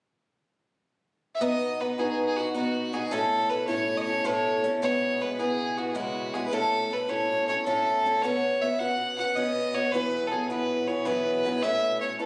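This cheerful Celtic folk fragment, cut from a longer piece, opens with a short pause before all three instruments enter together at 1.4 s and play through to 12.3 s in a straight 9/8. Up front, a single bowed fiddle carries the melody with a biting, earthy tone. Beside it, a picked acoustic guitar adds swing-style accompaniment that sounds boxy, with audible finger squeak. In the background, one cello holds a smooth, even drone with vibrato, while the chords move through B, A, C#m7, Bsus2, Eadd9 and Aadd9. The sound suggests a phone held in a small room, with a moderate short reverb, compression and a rolled-off top end that takes the sheen off the brighter parts.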